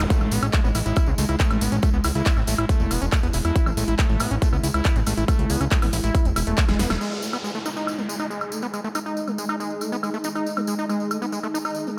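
A punchy, up-front electronic kick drives this hypnotic, intense psychedelic trance excerpt alongside a fat, saturated analog bass. The kick drops out as a drum fill begins near 6.7 seconds, and the bass follows at 7 seconds after a band accent as the music shifts into a new section. Above them, a squelchy, gritty acid bass riff with tape echo and sidechain pumping runs throughout, joined by a big-room drum kit with a huge snare, metallic hats, handclaps and woodblock, plus a jingly acoustic tambourine. In the background, a pulsing gated texture with chorus holds sustained chords beside a cloudy, evolving granular pad, while a zap opens the piece and a downlifter sweeps in from 7.0 to 10.5 seconds.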